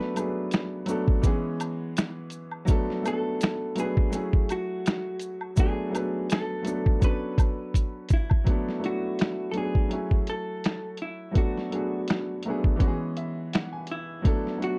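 Dark, lightly reverberant production gives this reflective, nostalgic lo-fi hip hop excerpt a hazy glow, with a swung 16th-note feel and chords drifting between Bm7, C#m7 and F#m9. Up front sit a muffled, pitched-down sampler-style drum kit with thumpy kick, medium-tuned snare, hi-hat and finger snaps, and a clear, woody upright piano whose short-sustained accompaniment carries the harmony. A clean, picked hollow-body electric jazz guitar sings the melody in a warm, compressed tone, while close, dry maracas and woodblock add texture from 0.2 to 8.4 seconds, around a drum fill at 7.7 seconds that leads into the next section.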